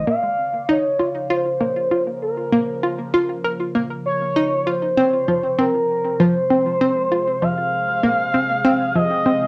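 Hypnotic and expansive, this short excerpt of ambient, sequencer-driven space music moves at 98 BPM in a straight 4/4, set in Bb minor with chords shifting from Bbm to Fm at 5.0 seconds. A hollow, bouncy square-wave pluck carries the riff up front, its fast attack and short decay thickened by a noise layer, a sub octave and a wave-folded edge, with chorus and analog delay trailing each note. Alongside it, an expressive portamento lead sings the melody between Bb4 and F5, smooth and mellow with vibrato, coloured by chorus, cassette tape and analog delay. Beneath them, a sweeping resonant pad built from detuned sawtooths holds sustained chords, bright and evolving with a slow attack and long release, and fades in from 0.1 seconds while sitting lower in the mix. A wet studio reverb with a short 0.6-second tail wraps the parts in a home cassette recording that gives the whole a lo-fi intimacy.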